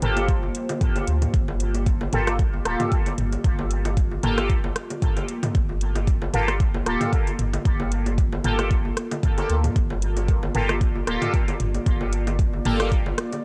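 A dry, gritty hardware recording with cassette tape character and a digital ambience frames this cavernous, deep dub techno excerpt, swung on the 16ths and cut from a longer piece, built on a single sustained chord. An up-front, layered electronic kick drum enters at 0.3 s over a clean, smooth sine sub bass with transformer saturation, while a soft vintage rhythm box adds overdriven metallic hats and rim clicks, and overdriven electronic toms and bongos carry dub echo, both sitting in small room ambience. Above them, a juicy, detuned sawtooth polysynth fires bright, resonant filter-swept stabs through chorus, phaser and dub echo, and a moody, full-bodied ambient pad with a slow attack and long release holds chords in the background, with sidechain pumping on the pad, stabs, sub bass and toms.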